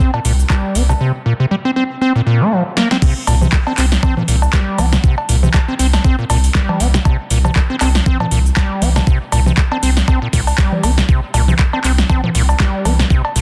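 A squelchy, resonant square-wave acid bass riff with overdrive, tape echo and sidechain pumping opens this playful, trippy acid house excerpt at 119 BPM with swung sixteenths, alongside an overdriven, thumpy sampler-style kick and an up-front analog drum machine of punchy snare, metallic hats, handclaps, congas, cowbell, shaker and crash, while a deep, thick tube-saturated sub bass on C2 joins at 0.2 seconds and a drum fill at 2.8 seconds leads into the drop at 3.0 seconds, all in a dense, heavily limited mix with light reverb.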